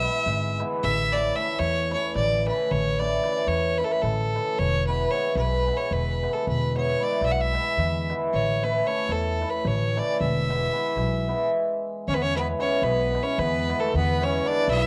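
Pulsing in a straight 7/8 at 224 eighth-note beats per minute, this wild, virtuosic Balkan wedding-band excerpt in E mixolydian is led by an intense, clear bowed fiddle with light vibrato up front. Beneath it sit a shimmering, ringing hammered cimbalom, a woody pizzicato upright bass and a small clay-shell darbuka played with soft hands in the background. After a brief stop at 11.5 seconds, a soft-attack trumpet in classical style enters at 12.1 seconds as a second line, all captured in a homespun cassette recording with moderate spring reverb and small-room ambience.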